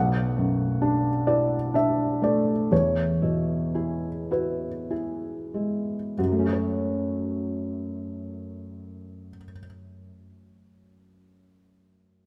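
A felt-muted upright piano and a concert harp open this sorrowful, moving cinematic excerpt together in F# minor, the piano's soft, intimate accompaniment carrying audible action noise while the thumb-plucked harp rings out in mellow arpeggios. In a slow, rubato 6/8 that slows further through the opening, the harmony moves from Bm7 to E before settling on F#m as a new section begins at 6.2 seconds. Both instruments sit up front in a close, detailed sound with moderate stage reverb, the harp ending at 10.1 seconds and the piano carrying on to 12.3 seconds.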